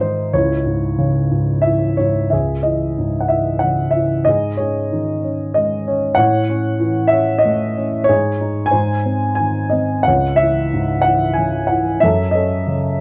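A dark, mellow baby grand piano, worn and intimate with audible action noise and sitting up front in light reverb, carries this brooding, bittersweet classical excerpt alone in C# minor, a rubato 3/4 at 93 BPM that moves from C#m through G#sus4, A and G# back to C#m before reaching F#m at 12.0 seconds, cut from a longer piece.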